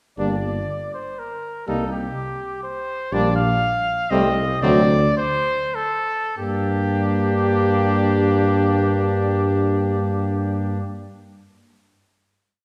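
In a rubato triple metre, this short, heroic and grave classical brass quintet piece sets a clear, lightly vibrato cornet melody up front over a soft-attacked trumpet second line, with a distant, mellow French horn and a warm trombone in the background playing short accented and sustained chords, and a smooth-topped bass trombone up front sounding the bass on the beats, slowing from 2.4 s before settling on a final chord at 6.4 s, heard from further back in a reverberant recital hall.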